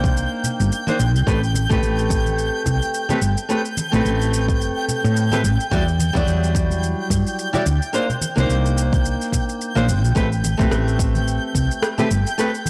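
Wistful and warm, this sunset chillout excerpt moves at 108 BPM in A minor with a swung sixteenth feel, drifting through Cm9, Am9 and Em9 chords. A bright, fingerpicked nylon-string guitar sits up front with a low-pass filter and digital delay, over a dark, growly, round fretless bass with transformer saturation, while an overdriven electronic kick, layered shaker and rim click, and close acoustic congas carry the groove. A twinkling granular texture with an octave-up shimmer and long release sparkles high above, all within light reverb and a blown-out, overdriven overall sound across the 12.7 seconds.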